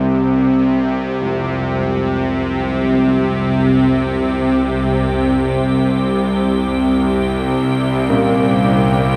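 Ominous and vast, this dark ambient drone excerpt unfolds in free time as a tense, warbling, string-like drone with vibrato sits up front over C2 to C3, an icy, crystalline glass pad with chorus and shimmer reverb fades in on G4 from the start, and bronze carillon bells enter at 1.2 s with ringing arpeggios in the background through tape echo and shimmer, the whole excerpt bathed in a long cathedral reverb.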